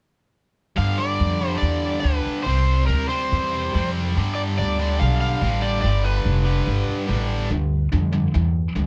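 A light reverb frames this raunchy, driving rock cut at 143 BPM in G mixolydian, where a bright, tight distorted guitar, double-tracked and up front, picks a riff over a woody, dark pizzicato upright bass with steel strings through G7, C and back to G7. An overdriven slide guitar played with fingerpicks carries the melody with plate reverb from 0.8 s to 7.3 s, after which the riff and bass push on to a closing G5 until 8.9 s.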